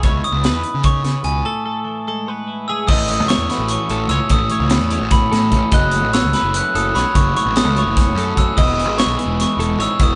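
A twelve-string electric guitar chording, a second twelve-string guitar playing arpeggios, a fuzzy overdriven picked bass and a punchy studio drum kit start together. A bell-like glockenspiel struck with brass mallets carries the melody from 0.2 seconds. This bright, wistful stretch of math rock and midwest emo moves in 7/8 at 296 BPM counted in eighths, set in A lydian and cut from a longer piece. The drums sit up front with an airy small-room sound, a high-tuned snare, hi-hat and crash cymbal. The fuzz bass is also forward, while the clean, compressed guitars stay lower in the mix, the arpeggiated one twangy and set in the background. After a break from 1.5 to 2.9 seconds, a crunchy, double-tracked overdriven guitar riff enters behind the band at 2.9 seconds. The harmony then moves through A6, F#m7 and Emaj7 under light reverb, with the feel of a group playing live in one room and a slightly dulled top end.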